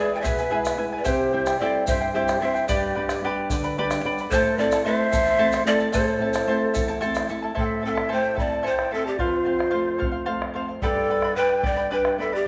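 A steady 6/8 pulse at 74 beats per minute, counted in dotted quarters, carries this earthy, wistful Andean folk excerpt in A minor, cut from a longer piece. Large cane pan pipes lead the melody with a breathy, tongued tone, vibrato and a touch of chiff, while a bright, end-blown wooden quena sings a second line, its vibrato slightly unsteady. Up front, a fingerpicked charango shimmers on its double strings, some doubled at the octave, and a dark, thumb-plucked flamenco guitar adds accompaniment beneath, slipping in a nylon-string fill from 3.5 to 4.3 seconds. A deep, vintage-sounding bombo anchors the ensemble, joined by a grainy tube shaker that drops out at 7.4 seconds as the music moves into a new section on chords of A minor, F and G. The whole group sits in a moderate concert hall reverb that lends the ensemble an airy, spacious glow.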